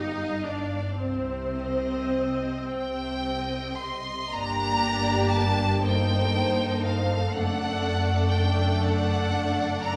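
A focused, up-front violin section carries a yearning melody between Eb5 and C6 in this solemn, slow romantic movement for string orchestra, cut from a longer piece, moving in a rubato 6/8 at about 34-41 BPM from C minor into G minor at 4.3 s, with a second violin line, a distant viola section and a lush cello section in the background sounding alongside the double basses beneath, all bowed with vibrato and bathed in the wet reverb of a recital hall.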